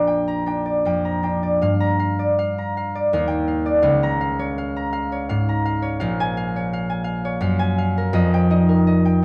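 Moving in an unhurried 3/4 at 83 BPM, the rhythm sways with uneven, rubato beats, giving this short classical solo harp excerpt in Bb major a peaceful, dreamy feel. The concert harp plays alone throughout its 9.2 seconds, fingerpicked and ringing up front across a range from Bb1 to Bb5, its tone acoustic and warm, while the harmony drifts from Bb6 and Gm7 through Ebmaj9 into darker colours like Db6, Bbm7 and Gbmaj9 before pausing on F9sus4. Moderate studio reverb and a dark production surround the instrument, and the piece is tuned slightly high at A4 = 444 Hz.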